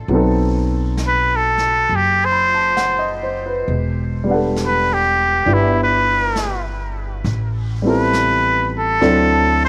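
Jazz ballad at a slow 67 BPM with a gentle swing and an intimate, late-night mood, where a warm, short-sustained baby grand piano and a woody pizzicato upright bass open together over a brushed drum kit softly set back, before a bright, nasal trumpet with a straight mute enters at 1.1 seconds, up front with vibrato and tape echo, to carry the melody through a studio-room sound over chords moving from B7b9 through Em11 and Am9 to D9.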